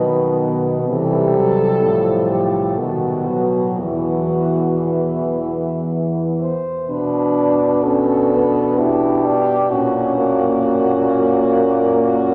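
In a slow, rubato 3/4 at 56-66 BPM, this melancholic, elegiac fragment of a classical piece for horn quartet opens in E minor and turns to B minor at 6.9 s. A clear French horn with light vibrato sings the melody, while a smooth-topped horn carries a second line in the background, and a warm accompanying horn and a mellow bass horn, both with light vibrato, sit up front. A wet cathedral reverb gives the melody, accompaniment and bass horns a distant, roomy presence.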